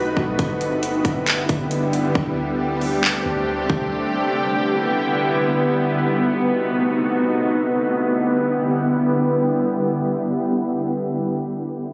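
In free time, this ethereal, spacious cloud-rap hip hop fragment in E minor opens with a shimmering, detuned ambient pad whose octave-up shimmer, chorus, sidechain pumping and low-pass filter sustain to 10.7 seconds, joined briefly by a very quiet, breathy wind-like noise texture, a deep, round 808-style bass that decays by 3.9 seconds, and an up-front trap kit of hard-clipped kick, metallic hats and handclaps running from 0.2 to 3.8 seconds, all set in a lush hall reverb with a phone-in-the-room character as chords move from G6 through D7sus4, Em7 and B7b9 back to Em7.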